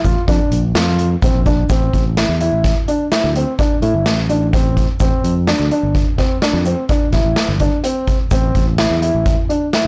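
A blown-out, overdriven recording with light reverb gives this short cut from a longer progressive instrumental a harsh, saturated edge. The band moves in an uneven 7/4 with a straight feel, and the mood is tense and intricate. A dark, mellow grand piano sits up front playing arpeggios in a narrow middle range, while a fingered electric bass, direct and amped with tube saturation, holds down the low end. A street-band drum kit, acoustic and airy in a big room, brings a boomy kick, a medium-tuned snare and hi-hat close to the listener, with a grainy egg shaker tucked in the background until 8.5 seconds. The harmony opens on Bb before shifting at 1.7 seconds into a longer passage that circles through Am and G7sus4 and returns to Am.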